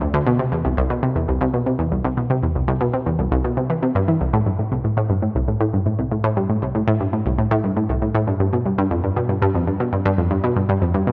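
A straight 4/4 pulse at 118 BPM anchors this hypnotic, expansive ambient fragment in A minor, tuned slightly below standard pitch to A4 = 438 Hz. An analog pluck synth plays alone for the full 11.1 seconds, sitting in a low register from C2 to E3. Its detuned sawtooth tone is round yet bright, with a fast attack and a decaying filter pluck. Chorus and analog delay thicken and extend the sound, and the synth sits up front in a light reverb. The piece moves into a new section at 4.3 seconds, and it is cut from a longer work.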